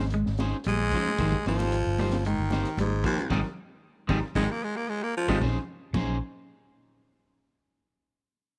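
A straight 4/4 afrobeat groove at 113 BPM drives this short, defiant and hypnotic cut in Bb dorian. The crunchy breakbeat kit sounds saturated and dark, with a high-tuned snare, a tight kick, dark cymbals and a rolled-off top. Ringing, high-tuned congas with hard hands sit in the background, while a round, amped fingered bass sits up front. Two slightly broken-up, twangy electric guitars fill out the middle: one picks stabs, the other plays fingered arpeggios, over harmony that moves from Bbm11 to Abmaj9 and back to Bbm11 at 5.4 seconds. A raspy, punchy baritone saxophone takes the solo from 0.7 seconds, close-miked with scooped notes, as a drum fill and band accent arrive at 3.3 seconds, all captured in a dry, close 1970s-style studio sound.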